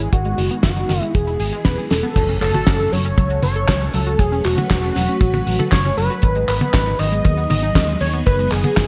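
Opening with a thick, detuned unison lead carrying a bittersweet, melodramatic melody up front over a swirling phased string machine, a round analog pluck arpeggio under a filter sweep, a bright, punchy envelope-filtered fingered bass, a damped 70s drum kit with a fat snare, dark cymbals and gated reverb, and a tight kick from 0.1 seconds, this 118 BPM Italo disco passage in F# dorian moves from G#m7 through E to F#m after a drum fill at 1.9 seconds, where a very quiet impact sounds from 2.2 to 4.2 seconds amid a fairly dry, vinyl-crackled mix.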